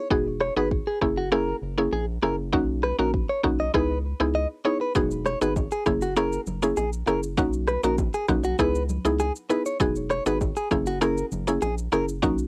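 A bright, clean, direct-recorded electric guitar riff opens this sunny, joyful afrobeats excerpt at 99 BPM. It is joined almost at once by a woody, chorused, mallet-like FM synth pluck sitting up front, a deep, round analog bass, and an electronic afro-pop kit of kick, rim click and shaker with cassette tape colour, before ringing acoustic congas and bongos slip into the background at 5.0 seconds, the whole home cassette recording carrying light reverb over an Emaj7, F#7, Bmaj7, C#m7 progression.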